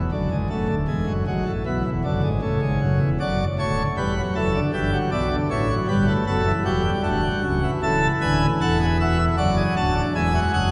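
A cathedral's long, wet reverb surrounds this recording, heard from deep in the room with a softened, rolled-off top end. It is a short fragment of a classical, baroque-style four-part fugue for solo pipe organ, stately yet lively in mood, moving in a straight three-beat metre. The organ plays alone from 0.0 to 10.7 seconds on a full plenum registration, its mixtures giving a brilliant, baroque-voiced edge that still sits forward despite the distance. Its range runs from a deep C#1 up to A5. The harmony passes from D over F# to E, then through A, D, G, A and D, moves to A over C#, and returns to D over F# before closing on E.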